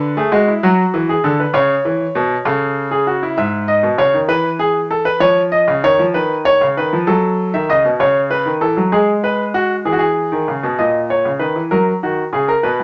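A bright, brilliant concert grand piano plays alone and up front in this elegant, lively fragment of a classical, baroque-style two-part invention in a straight 12/8, its short sustain and deep bass spanning G#2 to E5. The harmony moves through Bm/D, A, E/G#, C#7 and F#m before a new section begins at 10.8 s on F#/A#, and the passage breaks off at 12.8 s. A moderate studio reverb gives the piano an open sense of space, while its highest frequencies are trimmed.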